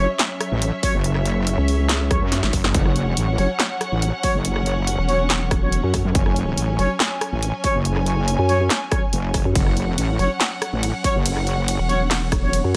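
Heavy wobble dubstep in F# minor at 141 BPM with a half-time feel and an aggressive mood, this excerpt pairs a nasal, formant-filtered vowel-sweep wobble bass with a detuned, saturated sawtooth wobble bass that enters at 0.5 seconds, while lush bowed strings hold sustained chords under sidechain pumping and a low-pass filter, dark, distant brass stabs echo through delay, a punchy overdriven electronic kick from 0.8 seconds joins an up-front dance kit of snare, handclaps, hi-hat, ride and rim click with a drum fill at 2.3 seconds, and a very quiet electronic zap flickers at 2.6 seconds in a dry, close mix.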